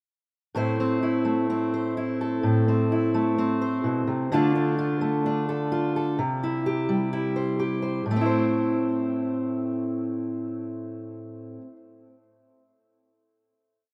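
A fingerpicked steel-string acoustic guitar with warm, fresh strings sits up front on its own in this short, bittersweet and wistful folk piece at 128 BPM in A minor, playing a rolling fingerstyle arpeggio through Am, Dm and C in the verse before settling on a final Am chord from 8.1 to 11.8 seconds, its tone touched by tape echo and bathed in a lush hall reverb within a rough home-demo mix.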